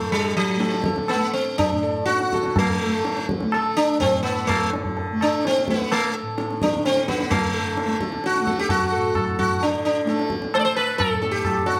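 Set in a straight five-beat cycle that gradually speeds up, this solemn, longing passage of Hindustani classical music is cut from a longer performance. A bright, buzzing, plectrum-plucked sitar sits up front with round tone and sympathetic strings, carrying the melody over a softly plucked, shimmering tanpura drone, while a low-tuned, ringing tabla enters at 0.1 seconds and sounds distant, as if in a large room. The music moves into a new section at 7.3 seconds, captured with close, detailed microphones in a moderate recital hall reverb.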